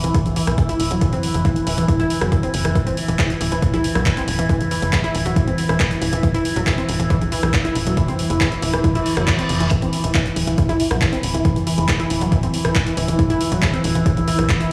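A punchy, tape-warm electronic kick drives this relentless, industrial peak-time techno excerpt, backed by an analog drum machine's handclaps, hi-hat and rim click and a tight, nasal sequencer bass that pumps against the beat. On top, a bright, round, detuned analog pluck riff with chorus and tape echo pumps alongside a resonant drone whose overtones keep shifting under chorus and its own reverb. A reverse cymbal rises faintly in the background at 9.0 seconds, and the whole mix sounds like it is played on a big sound system in a bare room.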